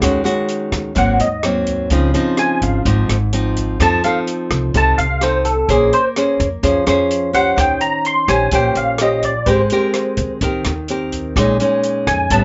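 Breezy, romantic bossa nova with a straight feel, carried by a bright, fingerpicked classical nylon-string guitar up front and a woody, thumpy pizzicato upright bass, while a small-room jazz kit adds dark, smooth hi-hat, rim clicks and a boomy kick. From 1.0 s a barky tine electric piano takes the solo melody, lightly overdriven through a combo amp with an ensemble chorus shimmer, sitting prominently over a run of chords from Ebm7 through Dbmaj9 and Abmaj9 to Bbm7. The mix has light reverb and a rolled-off top.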